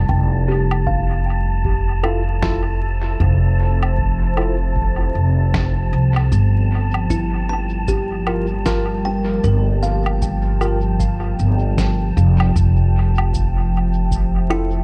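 A growly, woody upright bass sits up front in this deep, hazy ambient dub excerpt at 77 BPM with a swung 16th feel, anchoring the drift from Fmaj7 to Gm7 and back beneath a moody, detuned sawtooth pad with chorus and a sub octave. Short thumb-plucked kalimba arpeggios pass through a filter sweep and analog delay, while a breathy, wind-like tuned noise texture hovers high on A5 with its own reverb. An analog kick drum sits in the background, muffled, pitched-down woodblock, snare and cabasa trail off in dub echo, and from 2.0 seconds a worn, slightly out-of-tune tine electric piano adds lightly overdriven, echoing stabs, all under a dry, echo-heavy mix dusted with vinyl crackle.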